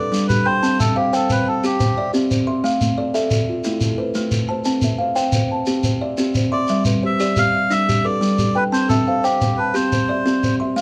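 Two kalimbas and a reedy, nasal melodica open together, with a grainy shekere joining almost at once in this rippling, warm cut from a longer piece of southern African traditional music. The interlocking mbira-style cycle moves at 118 BPM in a straight 12/8, with harmony circling through G, C, Am and back. The front kalimba, thumbnail-plucked, rings out woody and hollow with a vintage, band-limited sheen, while the second kalimba, plucked with the fingertip, sits softer and darker beneath it with short, buzzing notes. The breathy melodica carries the melody in the mid-range, dropping out at 2.1 seconds and returning at 6.5 seconds. The shekere sounds mellow and distant, as if in a large room, yet stays up front in the dry, close 1970s-style studio sound.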